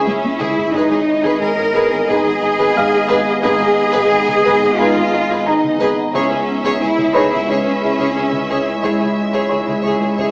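Cinematic hybrid orchestral and electronic film score, vast and brooding, moving at 89 BPM in a straight 4/4 and tuned to A4 = 437 Hz. A lush violin section carries the melody high and distant, while a second violin section and a focused viola section sit in the background with bowed vibrato. Up front, a close cello section anchors the bass, supported by a background double bass section and a thick, saturated sub bass. A deep, moody ambient pad with chorus and its own reverb holds sustained chords, and a soft, felt-muted upright piano adds an intimate texture. A taiko ensemble struck with hard sticks opens with a drum fill from 0.1 to 0.7 seconds, and a very quiet, dark French horn section joins at 0.8 seconds with sustained chords, as the harmony moves from Dbm to Abm and back to Dbm. The whole passage sits in a wet scoring-stage reverb yet comes across with a small-speaker sound.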